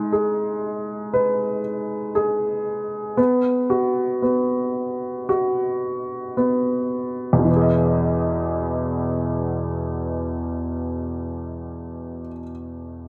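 A woody, slightly detuned upright piano sits up front with long sustain, carrying this tender, emotional pop fragment on its own from 0.0 to 13.1 seconds as a slow accompaniment. The opening passage eases and slows through G#m and B5 chords until 7.5 seconds, where it settles onto an Emaj7 for the closing passage. A moderate plate reverb lends the piano a lingering, spacious tail.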